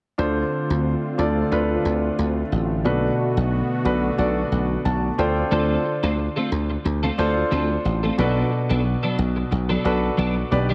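Glossy and uplifting, this pop excerpt moves at 90 BPM in 4/4 with a light sixteenth-note swing, cycling between Dm7 and Bm7 chords. A clear, polished baby grand piano sits up front as the accompaniment throughout, joined by a punchy, foam-muted slap bass played with the thumb that sounds bright and direct. Behind them, a smooth, warbling analog pad built from detuned sawtooth tones holds sustained chords with a slow attack and chorus until 5.5 seconds, as the piano's fill from 4.5 seconds comes to a close. At that point a twangy, compressed twelve-string electric guitar enters with a clean picked riff, colored by ensemble chorus and delay. A lush hall reverb gives the whole mix a spacious, sheen-like finish.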